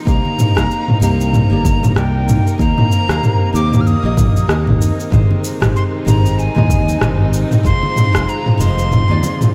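This sunset chillout excerpt drifts at 95 BPM in C minor with a wistful, gently swung 4/4 feel, its chords moving from Cm7 through Eb6 and Abmaj7 to Fm7. A breathy jazz flute carries the melody high in its range, sounding distant and metallic with soft-edged vibrato, roughened by vintage 12-bit sampler grit and trailed by digital delay and slapback echo. A bright, fingerpicked nylon-string guitar accompanies with the same delay and slapback, while a bowed string section holds sustained sul tasto chords in the background, intimate and close. A punchy, direct fingered electric bass anchors the low end until 9.2 s. The up-front deep house kit, with cabasa, rim click and toms, sits over a deep, tape-warm electronic kick that stops at 8.3 s, with very quiet, ringing congas tucked in dry and close. A moderate concert hall reverb gives the mix a big arena sound.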